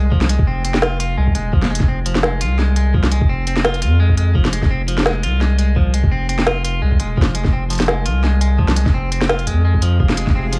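A thick, saturated sub bass sits up front through this tense, dark fragment of half-time drum and bass, holding sustained sine tones with a fast attack deep in the low register beneath a single F minor chord. A pitched-down, sampler-style kick adds a gritty, thumpy weight with a tape-like character, while an electronic kit places a woody snare and smooth hi-hats close to the listener. At 170 BPM in 4/4, the groove carries a light swing on the sixteenths. A bright, twangy clean electric guitar picks arpeggios in the middle register, colored by phaser and dub echo. At 10.0 seconds a lush symphonic cello section enters with bowed, vibrato-rich sustained chords that pump against the sidechain. The mix is dry, with only a small room ambience, and it is tuned slightly sharp to A4 = 443 Hz.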